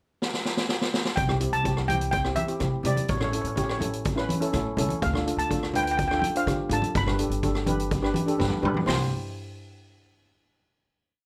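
Sunny and festive, this short calypso in C major moves at 125 BPM, opening with a street-band drum kit fill before a bright, shimmering lead steel pan states a motif-based melody over close, dry chords from a second pan, a woody pizzicato upright bass with a syncopated figure, and loose, band-limited congas in the background, all in a small room and closing on a final chord at 8.9 seconds.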